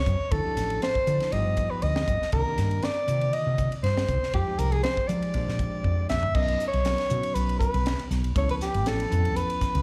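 Heard live through a club PA with light room reverb, this cut from a longer electric jazz fusion piece moves at 119 BPM in 4/4 with a gentle 16th-note swing and a soaring, bright mood, as a mellow soprano saxophone with light vibrato and scooped notes carries the melody up front through plate reverb, slapback echo and analog delay, a growly, hollow-body fretless bass sits forward, a crisp drum kit with a high-tuned snare and punchy kick plays a fill from 5.8 to 6.3 s, and a bell-like tine electric piano supplies accompaniment with its own plate reverb and slapback over rich chords running from Dm9 to Db7alt.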